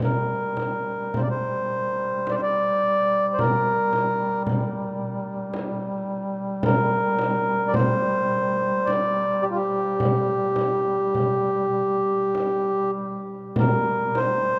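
Caucasian folk lament in G minor, solemn and mournful, moving in a slow, rubato 3/4 at around 49-57 BPM with tuning set to A4 = 439 Hz. A reedy, round accordion sits close-miked and up front carrying the melody between F4 and D5, while a mellow duduk holds a G3 drone with vibrato and scooped folk-style notes, and a small, bright frame drum enters at 0.6 s from a distant, large-room vantage. A wet cathedral reverb with a 6.0-second tail lends the excerpt a vast, hallowed space.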